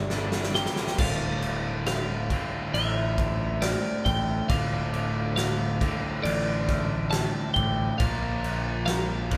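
In this cathartic, cinematic post-rock passage, a huge arena drum kit sits up front with its fat snare and punchy kick, opening with a fill before the main section arrives at 1.0 seconds. A bright twelve-string electric guitar carries the melody over a biting overdriven guitar riff and a dark, round fuzz bass, while a very quiet twangy guitar and a mellow glockenspiel played with rubber mallets add arpeggios in the background. An icy, crystalline pad holds sustained chords that move from Gmadd9 to Dm7 and then Bbmaj7, and the whole band sounds like it is playing live in one big, reverberant room in this cut from a longer piece.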